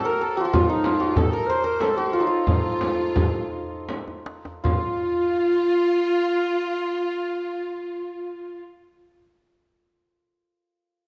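Festive and passionate, this short Persian modal ensemble piece in dastgah homayun on F moves in 3/4 at 76-95 BPM, cut from a longer work and heard through a moderate scoring-stage reverb with a dark production. A shimmering, ringing santur carries the melody up front, supported by second lines from a breathy, bright low ney with vibrato and a lush symphonic violin section set further back, all three spanning Eb4 to C5 through the full 8.6 seconds. A tight, close tombak and a small, distant frame drum play from near the start until 5.0 s, with the tempo slowing from 0.5 s and a drum fill at 3.9 s leading into the second section at 4.7 s.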